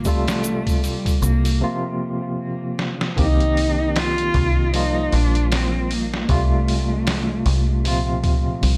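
A dark, smoky trip hop passage in C dorian at 77 BPM opens with a bowed cello, a barky tine electric piano, a deep dub fingered bass and an egg shaker, joined by a sampler-style drum kit a moment later. The lone cellist carries the melody with vibrato, portamento, a soft attack and a smooth, expressive top, trailed by tape echo. The bright, clean electric piano sits up front with tremolo and tape echo, and a filter sweep runs across it through the opening section. The pitched-down, gritty drums deliver a thumpy kick, a medium-tuned snare and hi-hat with compressed, tape-warm punch and studio ambience, while the round, foam-muted bass sits up front beside them and the ringing shaker stays in the background. At 1.6 seconds the shaker stops and a break begins, and a drum fill leads into a new section at 3.2 seconds, where the harmony moves from Fadd9/C and Bbsus2/C to Cm7 and Gm7 before returning to Fadd9/C and Bbsus2/C. 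The mix carries little reverb, and the excerpt is cut from a longer piece.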